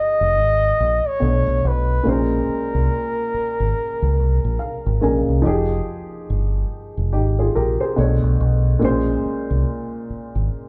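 A breathy, whispered flugelhorn opens this late-night, smooth R&B excerpt over a dark, woody upright piano, carrying an intimate pop-style melody with light vibrato and a soft attack until it falls away at 5.0 seconds. A deep, round fingered electric bass, direct and amped, enters at 0.2 seconds beneath a swung 16th-note feel and minor ninth chords, while the short-sustained piano plays a fill from 4.2 seconds and carries on to the close. The band sounds live in one room with light reverb, and every part sits up front.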